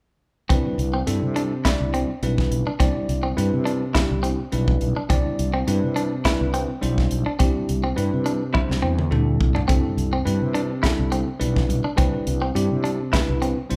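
A lightly swung sixteenth-note groove at 105 BPM in 4/4 drives this bright, soaring stretch of electric jazz fusion in C major, opening on a Cmaj9 chord. The crisp fusion drum kit sits up front with a high-tuned snare, punchy kick, hi-hat and toms, its polished, airy studio sound anchoring the band, and a drum fill arrives from 8.5 to 9.7 seconds. A round, up-front fretless bass holds the low end beneath a bell-like tine electric piano that supplies direct, sparkling accompaniment. A compressed, picked electric guitar adds warm, clean stabs through the passage. The band plays live in one room with light reverb, all four parts entering at 0.5 seconds, and the guitar drops out at 13.6 seconds just before the others finish.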